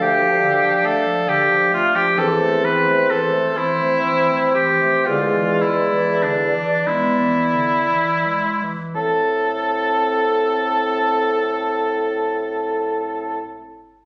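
An up-front oboe with light vibrato carries the second line beneath a pure, straight-toned flute melody, joined by a mellow French horn and a distant, roomy clarinet in accompaniment and a dark, soft-attacked bassoon bass, in this melancholic, elegiac slow romantic movement for wind quintet in A minor: a rubato 12/8 at 26-48 BPM that slows through its first 9 seconds as Dm and E7 harmonies settle onto Am at 9.0 s, heard through wet recital-hall reverb on a phone recording with dulled highs and a faint mains hum.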